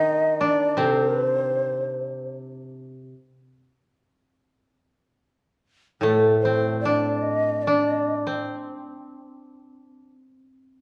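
Japanese traditional chamber music, austere and calm, in a short cut from a longer piece. A hollow, airy bamboo shakuhachi carries the melody with vibrato, tongued chiff and lifted highs, over two fingerpicked koto parts, woody, dry and up front: one plays a second line in the middle register and the other a lower accompaniment. At 8.4 s the shakuhachi and lower koto stop, leaving the second koto alone until 10.8 s, all heard in a moderate recital hall reverb through worn, warbling cassette tape with pitch drift and lossy compression artefacts.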